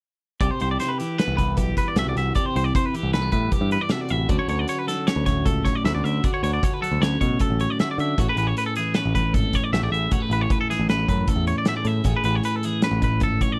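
Set in a straight 5/4 at 155 BPM, this math rock and midwest emo excerpt has a wistful, intricate mood, with every part entering together at 0.4 seconds. A loose indie drum kit sits up front, its punchy kick, medium-tuned snare and hi-hat captured in a pumping studio room with a rolled-off top. A picked electric bass, direct and warm, anchors the low end. A twelve-string electric guitar fills out the accompaniment with a compressed, twangy sound, while a second picked guitar plays arpeggios higher up in a bright, clean voice. The harmony moves from Cmaj7 to Dmaj7 and then settles on Amaj9 at 8.2 seconds, all in a dry space with little reverb until the passage cuts off at 13.6 seconds.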